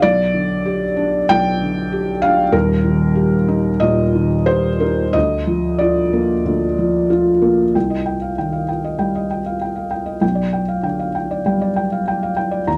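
A felt-muted upright piano opens alone, its tone soft, mellow and vintage, with thick felt dulling each note and the noise of the action audible up close. This short neoclassical minimalist piece, cut from a longer work, has an intimate, reflective mood, and the solo piano plays with a rubato feel in 4/4 across a range from Eb1 to Bb5. The harmony moves from G/B through Eb and Bb/D, then settles on Cm at 7.7 s, where a second passage begins, returning to G/B at 10.2 s before the close at 12.8 s. The piano sits up front in a small room with moderate reverb, and the production is dark and warm in character.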